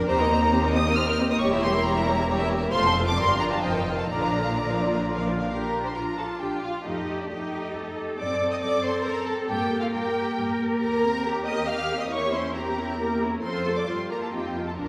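A lush, expressive violin section carries the melody above focused second violins, smooth and even violas, warm cellos in the background and soft-edged double basses, every section bowing with vibrato in a lively, cheerful classical-period string orchestra movement in a rubato triple metre, set in the reverberant air of a recital hall.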